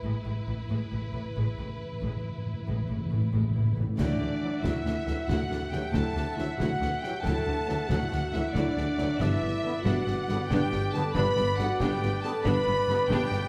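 A heroic adventure film score in a determined, swashbuckling mood, this passage moves at 92 BPM in 12/8 and is cut from a longer piece. It opens with a build-up over an E/A chord, the full string body of violins, violas, cellos and double basses sounding beneath a timpani fill struck with medium mallets that carries the first 3.9 seconds. The lead violins sing the melody with expressive vibrato and a soft attack, a second, more distant violin line and lush viola accompaniment sit in the background, and the double basses anchor the low end with portamento, supported by focused cellos. At 4.0 seconds the harmony shifts to Dadd9 and the winds and brass arrive: an airy flute ensemble, a roomy oboe and a clear clarinet adding second lines, a mellow French horn section holding chords, and a very quiet tuba doubling the bass, while concert snare, bass drum and dark clash cymbals drive from the background. 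A tight trombone section joins the sustained chords just after, and the music settles onto G at 9.2 seconds, all bathed in a wet scoring-stage reverb.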